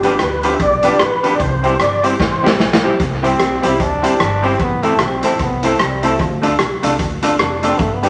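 A raspy, growling trombone takes over at 3.0 seconds for a gritty, present solo with vibrato, carrying this bouncy, joyful ska piece at 150 BPM in C major with a swung 4/4 feel. Before it, a lightly overdriven tonewheel organ states the melody with key click, chorus vibrato and a slow rotary speaker, and it stops at 2.6 seconds, just before a drum fill leads into the solo. A bright upright piano punches out short, brilliant stabs, while a clean semi-hollow electric guitar sits in the background with dub echo trailing its fingered accompaniment. Underneath, a woody, thumpy pizzicato upright bass anchors the changes from G7 to C, then Am and Dm, and an up-front garage drum kit with a punchy kick, medium-tuned snare, rim click and hi-hat adds its own dub echo. The whole band sits in a wet club reverb with a rolled-off top, and the recording is cut from a longer piece, ending at 8.1 seconds.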